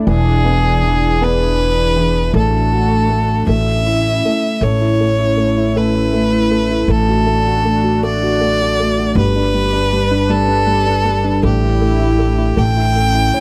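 A felt-muted upright piano and a warm analog pad open this heartfelt, romantic pop ballad in a slow 6/8 at 53 BPM, with a pizzicato upright bass arriving alongside them and a clear, bowed violin entering at 0.1 seconds to carry the melody. The piano sounds soft and intimate, boxy and thin in its muffled tone, with its action noise audible. Alongside it the pad holds smooth, detuned sustained chords with a slow attack, long release and a touch of chorus. The gut-string bass sits up front with a woody, thumpy, dark low end, while the single violin, played with vibrato and recorded close, has a focused presence over the accompaniment. The harmony moves from E7 through D/A and A, then after a new section begins at 4.6 seconds it passes through G and Asus4 before settling on A at 12.6 seconds. The sound is that of a dry, close 1970s-style studio with light reverb, and the passage is cut from a longer piece.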